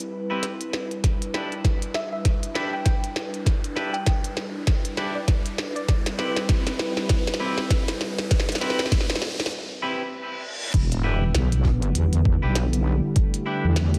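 Gritty and playful, this glitch hop excerpt at 99 BPM in E minor swings over a smooth, chorused analog pad, clicky hats and a tiny snare, while an overdriven, thumpy kick sits up front, twangy clean guitar stabs and a woody wave-folded pluck melody float in diffuse delay, a background riser builds toward a break at 9.5 seconds that a reverse cymbal fills, and a heavy, saturated wobble bass hits the drop at 10.7 seconds in a dreamy, reverb-soaked mix.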